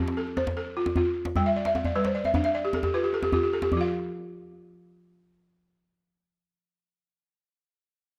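A woody, buzzing balafon sits up front with rubber-mallet arpeggios, moving from F to G with a fill from 1.4 s before the harmony falls away at 3.7 s. This joyful, flowing West African fragment runs at 101 BPM in a straight 12/8, cut from a longer piece. A deep, close djembe joins the balafon until 3.9 s, and the balafon carries on alone in light reverb.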